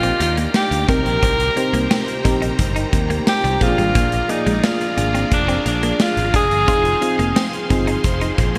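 Bathed in a lush hall reverb with a bright 1980s-style digital sheen, this nostalgic, romantic pop excerpt moves at 88 BPM in 4/4 over Ebmaj7, Cm7, Bb7 and Fm7, led by an up-front alto saxophone with light vibrato and a touch of delay that sings until 7.7 s. Beneath it, a big rock kit of punchy kick, medium-tuned snare, hi-hat and tambourine sits up front through gated reverb, while a growly picked electric bass anchors the low end. A round, warbling FM electric piano with chorus, a soft-attack sawtooth string machine voicing violas through phaser and ensemble chorus, a slightly broken-up guitar riff with analog chorus and a faint double-tracked overdriven guitar fill out the background.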